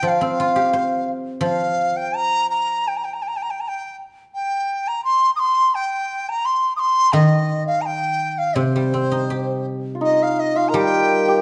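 Chinese traditional chamber music in C yu mode, tender and wistful, moving at 84 BPM in 2/4 with a loose rubato feel and cut from a longer piece. A mellow bamboo dizi carries the melody throughout, airy with a buzzing membrane, tongued notes and vibrato, its tone slightly unsteady, while a silvery guzheng played with fingerpicks accompanies, falling away at 3.6 seconds and returning at 7.1 seconds. Near the close, at 9.9 seconds, a shimmering hammered dulcimer adds a ringing second line, heard within a moderate stage reverb.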